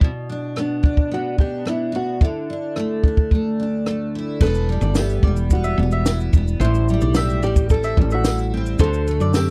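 Easy-going and sunny, this acoustic pop excerpt at 109 BPM opens with a full-bodied, double-tracked picked steel-string acoustic guitar and an up-front compact cocktail drum kit with a high-tuned snare and dark cymbals, is joined at 0.6 s by a small, thumb-plucked nylon-string guitar melody with finger squeak, then brings in a growly, woody fretless electric bass with lush chorus and mellow mandolin arpeggios at 4.4 s and a jingly tambourine in the background at 5.0 s, captured in a close 1970s-style studio recording with little reverb.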